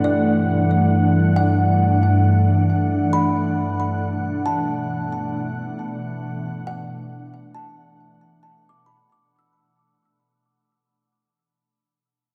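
Serene, luminous ambient fragment in 3/4, where an up-front, glassy, ethereal FM pad with slow attack, ensemble chorus and its own reverb holds sustained Gmaj7 and Bm7 chords, while a quieter, woody, dark kalimba plays short thumb-plucked arpeggios through a delay until 10.2 seconds, inside a vast cathedral reverb with cassette-tape character as the music fades out from 2.2 to 9.3 seconds.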